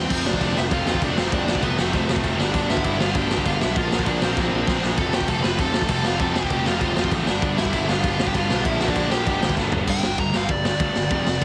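A straight 4/4 punk rock pulse drives this energetic, rebellious fragment at 196 BPM, with a raw, gritty, saturated, up-front garage drum kit (punchy kick, medium-tuned snare, crash and ride, toms) that plays fills near 4.4 and 9.6 seconds. Behind it, a crunchy overdriven guitar and a tight, bright distorted guitar pick riffs over F, G and Bb chords while a growly fuzz bass holds the low end, all set back in the mix. A dark, smooth overdriven lead guitar carries the melody throughout and breaks into a short solo over a G5 power chord from 9.9 seconds, everything packed into a dry, heavily compressed, radio-like sound.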